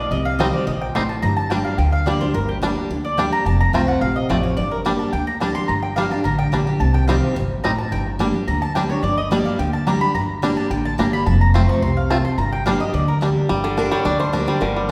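Bathed in a wet church-hall reverb, this driving, lonesome bluegrass passage, cut from a longer piece, sets a bright, full-bodied picked dreadnought guitar up front over a woody, thumpy pizzicato upright bass while a twangy banjo carries the melody from 0.4 s, a double-strung mandolin plays stabs and takes the solo until 13.2 s, and a nasal, metallic lap resonator guitar played with a steel bar enters at 13.6 s for a brief solo.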